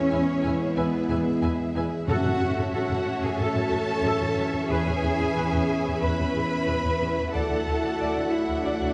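This cinematic orchestral film-score passage, cut from a longer piece, moves in a dark, dramatic mood over a straight 4/4 pulse. A violin section carries the melody while a second violin line joins it, both lush and bowed with vibrato, and a warm viola section fills in the accompaniment. Beneath them, a rich cello section and a clear, up-front double bass section share the bass. Dark French horns with a soft attack hold sustained chords in the background alongside dark trombones, joined by a close, smooth string section. Timpani struck with hard mallets add an articulate accent between 2.1 and 3.0 seconds, as the harmony shifts from E6 to F#m7, back to E6 and on to Dadd9. The whole ensemble sounds as if heard from further back in a recital hall, with a reverberant tail that deepens the sense of scale.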